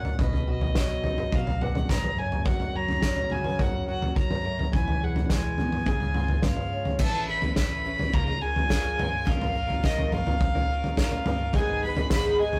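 A dark, woody fiddle carries the melody over fingerpicked steel-string acoustic guitar, a round, very quiet hollow-body electric bass and an up-front unplugged drum kit played with bundle sticks in this hopeful, nostalgic indie folk excerpt at 106 BPM in F# major. At 7.0 seconds a bright, shimmering twelve-string acoustic guitar takes over the accompaniment, and at 11.5 seconds an upright piano with long sustain and a thumb-plucked ukulele join in the background, followed by a brief jingle of tambourine at 12.1 seconds. The rough rehearsal-room recording has light reverb and warm saturation.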